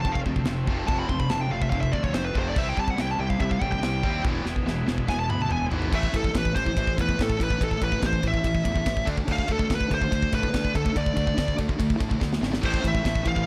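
Heavy metal at 143 BPM in a straight 4/4, epic and relentless, cut from a longer piece that settles into A minor at 5.9 s after a soloing lead guitar passage over F, C and E7 with a drum fill. A dark, high-gain lead guitar with delay carries the melody up front from A4 to C6, while a high-gain rhythm guitar and two tight, bright distorted guitars, one double-tracked, pick riffs in the background, the higher of them dropping out after 5.9 s and returning at 12.6 s. A growly fuzz-driven fingered bass and a punchy, polished acoustic kit, with china, crash and ride cymbals and tom fills, drive the music in a small, airy room with a dark production.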